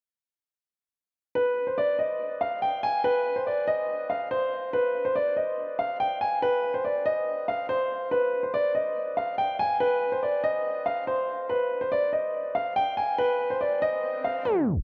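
This hip hop excerpt moves at 142 BPM in 4/4 with a half-time feel, and its mood is ominous and dark. A baby grand piano carries the melody from 1.4 seconds, sitting up front with a mellow, smooth, vintage tone, ranging from B4 to Ab5 and colored by analog delay. The mix is dreamy and soaked in a lush plate reverb with a long tail, and the tuning rests slightly below standard pitch at A4 = 438 Hz. At 13.8 seconds an electronic swell enters in the background, and a tape stop at 14.5 seconds brings the passage to a halt as the fragment cuts off.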